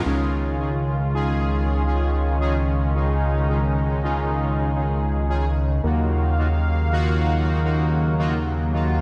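A fat, detuned sawtooth bass sits up front from the first moment of this nocturnal, moody synthwave excerpt, joined at once by a smooth, chorused pad with tremolo and bold, brassy synth stabs carrying chorus, delay and vibrato, all moving from C#add9 to D#madd9 at 5.8 seconds inside a lush hall reverb and bright 1980s-style digital production.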